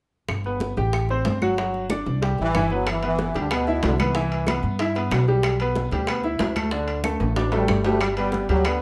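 Salsa at a brisk 187 BPM in G major, this short, sunny excerpt bursts with joyful energy from its opening moments. A dark, growly upright bass with a thumpy, woody pizzicato sits up front alongside a brilliant vintage grand piano whose smooth, long-sustaining chords carry the harmony through G, Am7, C, Cmaj7 and Dsus4 before landing back on G. Tight, high-tuned bongos tick along with thin-skinned congas and dry claves in the background. Ringing metal-shell timbales join at 2.9 seconds, and a drum fill arrives around 7.0 seconds. A clear, close-miked trombone section states the melody between 2.4 and 4.6 seconds, then returns at 7.6 seconds to push toward the close. Light reverb gives the ensemble a touch of room.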